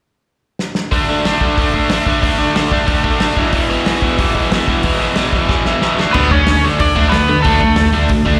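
Heard as a live gig through the venue's PA, with a small room and recital-hall reverb, this upbeat, rowdy punk rock excerpt runs at 184 BPM in a straight 4/4, tuned to A4 = 445 Hz. A loose acoustic indie kit with a tight kick and rolled-off top opens with a fill at 0.6 s. A bright, double-tracked overdriven electric guitar riff with slapback echo then drives over D5 and E5 chords. At 6.1 s a second electric guitar, picked and up front with its own slapback echo, adds a melody, while a distant bowed double bass holds a focused D2 with vibrato beneath it.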